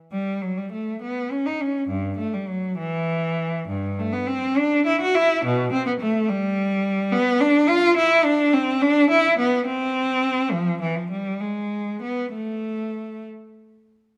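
Close, detailed microphones put a single bowed cello up front in a moderate recital hall, its rich, focused tone carrying vibrato and a smooth top as the reverb lingers around it. This flowing, introspective baroque-style suite movement for unaccompanied cello moves in 6/8 with free rubato, the solo line sounding from 0.1 to 13.3 seconds. It is a fragment cut from a longer piece.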